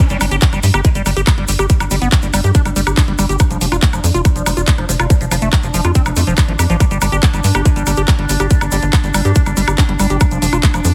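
Heavily compressed with a radio-like sheen and little reverb, this driving, psychedelic trance excerpt at 141 BPM runs on an up-front electronic kick, a layered garage kit of handclaps, hi-hat and woodblock, a punchy ring-modulated sequencer bass, a squelchy resonant acid riff with phaser and tape echo, a grainy egg shaker in the background, and a slow-attack drone of moving overtones entering at 1.2 seconds, all over a G5 to F5 chord shift.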